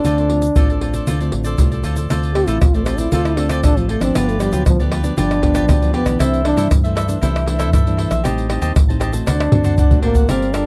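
A breathy, mellow trombone carries a yearning melody in D minor over crisp, bright cavaquinho, fingerpicked nylon-string guitar and an up-front bed of tube shaker, tight surdo, pandeiro and tamborim, joined almost at once by a dark, round, punchy electric bass in this lively samba and choro cut from a longer piece at 117 BPM. At 2.1 seconds the trombone moves into an intimate jazz-style solo with light vibrato and tape echo, over chords that move from Dm7 through G7 and C69 to Am7b5 and D7. A drum fill arrives at 9.3 seconds, all within a dry, close 1970s-style studio sound with light reverb.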